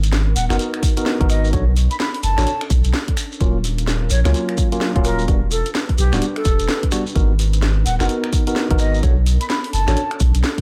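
In light digital ambience, this moody, late-night two-step UK garage excerpt swings over a thick, saturated sub bass held up front and a punchy electronic kick arriving at 0.8 s, joined by finger snaps, hi-hat and a cracking snare from a house kit, a grainy shekere, a very quiet ethereal, detuned pad of sustained minor chords, worn, slightly out-of-tune tine electric piano stabs through analog delay from 0.5 s, and an airy wooden flute melody with vibrato and its own analog delay entering at 0.4 s.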